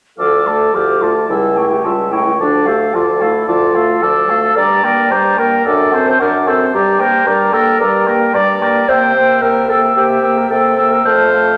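From 0.2 s a full wind quintet sounds together in this urgent, stormy excerpt of a quick classical-period movement in D minor at 110 BPM with a rubato feel, the pure, crisp-attacked flute carrying the melody above a distant oboe second line with light vibrato, while the smooth-topped clarinet and soft-attacked French horn accompany over a mellow, roomy bassoon bass, all heard in a wet recital hall as the harmony travels from D minor through G minor and C7 to settle on F at 11.1 s.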